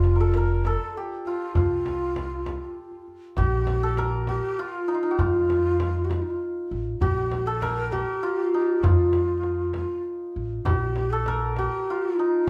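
Passionate and stately, this Persian modal ensemble piece in a straight 6/8 is cut from a longer work, and its mode shifts at 3.4 s. A shimmering, ringing hammered santur carries the melody up front, while a breathy, mellow end-blown ney with vibrato weaves a second line, and a woody, thumpy pizzicato upright bass anchors the low end, also up front. A deep frame drum with hard hands sits in the background and a very quiet, close tombak adds texture until 11.7 s, all played live together in a large, reverberant studio room.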